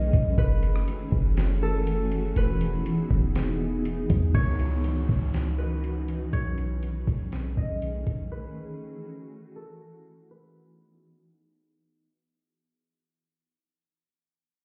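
A half-time 4/4 groove at 121 BPM anchors this hazy, spacious atmospheric cloud-rap, with a pitched-down, muffled lo-fi sampler-style drum kit (thumpy kick, fat snare, hi-hat and rim click) under a deep, boomy 808-style bass sitting up front. A bright, ringing concert harp carries the fingerpicked melody through tape echo and a low-pass filter, floating over a blurred, evolving granular pad that pumps with sidechain on chords such as F#m9, Emaj9 and C#m11. From 4.3 s a filter sweep and fade-out take hold and an electronic downlifter enters. Drums and bass drop away by 8.3 s, leaving harp and pad to drift on, muffled as if through a wall in a stone room.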